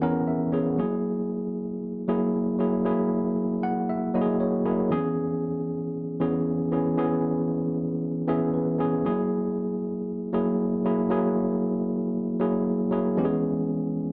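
A worn, slightly out-of-tune tine electric piano plays solo throughout this glamorous, danceable disco excerpt at 116 BPM in straight 4/4, its lightly overdriven tone heard through built-in speakers and placed up front. It moves between C#m7 and F#9, with fills at 0.0, 3.4 and 8.0 seconds. The sound is a dry, close 1970s-style studio recording with light reverb.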